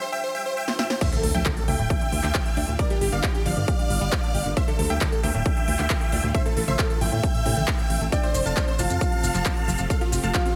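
Driving and soaring, this uplifting trance excerpt in D minor runs at 135 BPM, opening on a brief build-up where a huge, euphoric supersaw lead with dub echo and sidechain pumping carries the melody before a drum fill at 0.7 seconds on a big-room kit of crisp hats, handclaps, snare and crash re-recorded in a large room launches the drop at 1.0 seconds, marked by a very quiet electronic impact. The drop brings a punchy, tape-warm kick up front, a round, dark FM bass, and two lush detuned unison plucks in the background, one playing a second line and one spinning arpeggios, with the bass and plucks pumping under the sidechain. A shimmering, ethereal pad with chorus and 12-bit sampler grit sustains chords underneath, while from 8.1 seconds a dark, mellow grand piano with digital delay and grainy, saturated maracas join as the harmony moves from Am to Fadd9.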